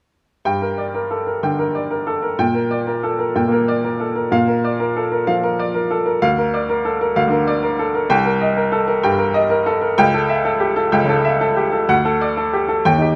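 A bright baby grand piano enters at 0.5 seconds and carries this stormy, passionate fragment of a virtuoso classical piano study alone until it breaks off at 13.2 seconds, cut from a longer piece. The playing is in G minor at 125 BPM in 4/4, with a rubato feel, and the instrument is tuned to A4 = 444 Hz. The piano spans C2 to G5 and sits up front, with a brilliant, natural tone and short sustain, set in light reverb. The harmony moves from Gm through Gm/Bb to Bb and Bb/D, then passes through Cm7 and A7/C# before arriving on D.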